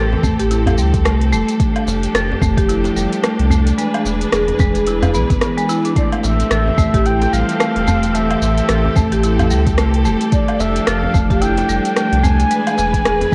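A bright, lush string section with gritty 12-bit sampler texture and sidechain pumping opens this mystical organic downtempo piece in A minor at 110 BPM, alongside dark, woody marimba arpeggios and a round, up-front sub bass that also pumps, with a softly swung 16th-note feel. A close, dry djembe sits in the background as an overdriven afro-pop kit of metallic hi-hats, rim click, shaker and woodblock enters with a deep, overdriven electronic kick, all moving through Am7, F69 and E7. At 6.0 seconds a breathy, flute-like synth lead arrives with analog chorus and tape echo, while light reverb and worn, warbling cassette pitch drift give the whole warm excerpt its faded character.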